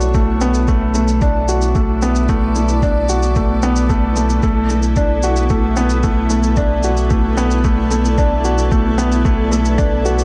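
A soft felt-muted upright piano, up front with audible action noise and tape echo, plays a riff over a blurred, granular cloud pad with built-in reverb and sidechain pumping, a round sine sub bass that also pumps, a quiet layered shaker and a muffled, thumpy kick from 0.1 s, in this dark, hypnotic and intimate piano and strings electronica excerpt that moves from Bm7 to D6/B at 4.4 s.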